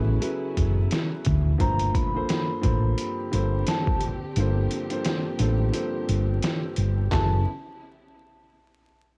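A home-cassette sound with vinyl crackle and small room ambience frames this gritty, tough boom-bap hip-hop excerpt at 87 BPM with swung 16ths, where a round, amped hollow-body electric bass and overdriven, muffled sampler-style drums with a thumpy kick sit up front (the kick drops out from 4.4 to 7.1 seconds), a dark, intimate concert grand piano with audible action noise shifts from F#m11 to Gm11 at 1.6 seconds, lush bowed strings add woody stabs with tape echo, and a soft-mallet vibraphone with slow motor vibrato enters at 1.6 seconds with a metallic, ringing melody.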